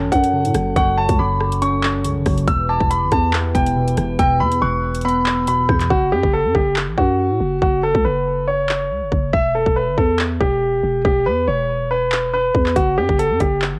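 A dark, ominous drill cut from a longer piece, heard through light reverb and digital ambience with the grain of a home cassette recording. The tempo is 140 BPM in a half-time feel, centred on F# phrygian and moving from F#m to Em, then to a bare F#5 chord and back to Em. A clear concert grand piano carries the melody up front, intimate and polished, its action noise audible and its long sustain coloured by cassette tape. Beneath it, a mellow tine electric piano and a French horn section with light vibrato hold the opening chords until 5.9 seconds, while an eerie, inharmonic FM synth bell drifts in the background with chorus and tape echo. A growling, buzzy 808-style bass runs throughout, and the drill drum kit sets a hard-clipped kick, rim clicks and handclaps against metallic hi-hats that drop out from 5.9 to 12.8 seconds.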